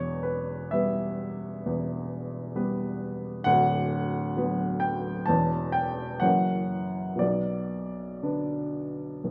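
A woody, up-front upright piano plays alone from the first moment in this bittersweet, stormy romantic character piece in B minor, moving with free rubato at 57-67 BPM in 4/4 across a range from D1 to A5, passing from E minor through Bm/D and C#m7b5/E onto F#7 before settling on B minor at 7.2 seconds, all set in a moderate large-studio reverb within a 9.3-second fragment of a longer work.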